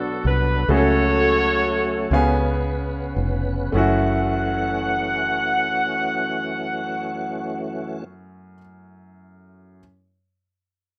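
In a straight 6/8 that slows over the opening 3.7 seconds, this fervent, soulful slow-gospel excerpt from a longer piece sets an up-front, mellow, soft-attacked vintage horn section with light vibrato and slapback echo on the melody over clear grand piano accompaniment, a tonewheel organ holding chords with key click, light overdrive, chorus vibrato and a fast rotary speaker, and a direct, foam-muted fingered electric bass, all in a rough home-demo mix with light reverb, until the horns and organ stop at 8.0 seconds, the bass drops out at 8.5 seconds, and the piano carries on alone to 9.8 seconds.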